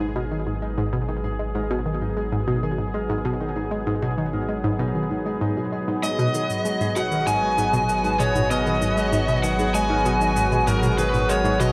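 Hypnotic and mysterious, this ambient, sequencer-driven space music moves at 97 BPM in G# minor, resting on a G#m7 chord as a bright, airy pad with chorus sustains chords over a deep, round analog bass, while a fingerpicked concert harp rings out delayed arpeggios in the background as it fades in, and an up-front, detuned analog pluck plays a riff. At 6.0 seconds an overdriven electric lead guitar enters with a delayed melody alongside electronic cabasa and toms, recorded in a large room. The whole excerpt sits in a huge ambient reverb and is cut from a longer piece.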